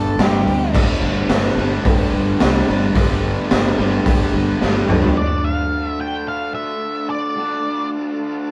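A raw, band-in-one-room classic rock fragment swaggers forward with a gritty, muffled drum kit up front and a drum fill at 4.6 seconds, under a stack of picked overdriven guitars (one with harmonic tremolo, one double-tracked and very quiet), a growling overdriven fingered bass, a dark, mellow baby grand piano, and a shouting rotary tonewheel organ with key click, while a fuzzy octave lead guitar sounds briefly at the start and returns at 5.2 seconds as the driving Gadd9 groove shifts to Dm.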